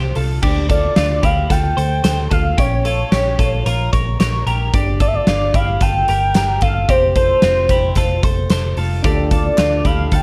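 A bright, twangy twelve-string electric guitar with slapback echo plays arpeggios over a round, foam-muted vintage electric bass at the start of this breezy, youthful jangly indie pop excerpt at 111 BPM, with a big rock drum kit joining at 0.2 seconds, its punchy kick and fat snare up front. A velvety sawtooth synth lead with chorus, vibrato, portamento and slapback echo carries the melody from 0.7 seconds over chords moving through Dm, Bbm, Gm7 and F. Soft, mellow electric-piano-like synth keys with chorus and tremolo enter at 9.0 seconds, and a hollow group handclap sounds briefly in the background, all set in light reverb.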